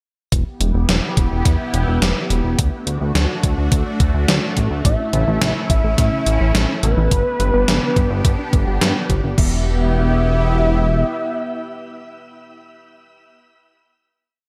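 A straight 4/4 machine backbeat of overdriven, gated-reverb snare, closed hi-hat and crash sits over a thumpy, overdriven electronic kick, both re-recorded in a large room, while a glossy chorused synth bass with sidechain pumping runs a sequenced sixteenth-note line in this nocturnal, moody synthwave piece. A lush, detuned unison pad pumps through sustained chords with chorus, phaser and shimmer reverb. At 4.8 seconds a thick, dark unison lead brings in a motif-based melody through cassette tape, digital delay and shimmer, joined by a soft, mellow pluck in the background whose 12-step arpeggio loop drifts against the bar; the drums stop at 9.5 seconds, leaving the bass, pad and lead on a final Em chord.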